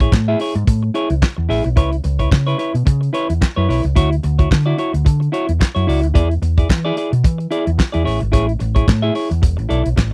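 A dry, close 1970s-style studio sound frames this glamorous, danceable disco excerpt at 110 BPM, with a light swing on the sixteenths and tuning set to A4 = 439 Hz. Up front, a soul drum kit with a fat snare, tight kick, rolled-off top, handclaps and hi-hat sits beside a dark, round, short-scale hollow-body bass played with the fingers. A clean, picked semi-hollow electric guitar supplies warm accompaniment through a chord cycle moving from Amaj7 through C#m7, Dmaj9 and E7 before settling back on Amaj7 and an E7sus4.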